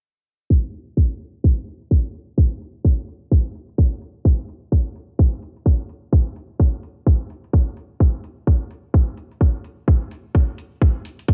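A tight, layered electronic kick drum sits up front in this cool, quirky slice of minimal techno, its tape-warm thump carrying the 128 BPM pulse in 4/4 with a 60% swing on the 16ths. The kick enters at 0.5 seconds, and an analog electronic hi-hat joins at 0.7 seconds, sitting far back in the mix, its top end dulled by a low-pass filter. A filter sweep runs on the drums across the whole passage, which ends at 11.3 seconds. The kick carries the character of a large room it was re-recorded in, while the hat has the closer sound of a small one. With little reverb and a home cassette recording that rounds off the highs, the piece, cut from a longer work, feels dry, hazy and lo-fi.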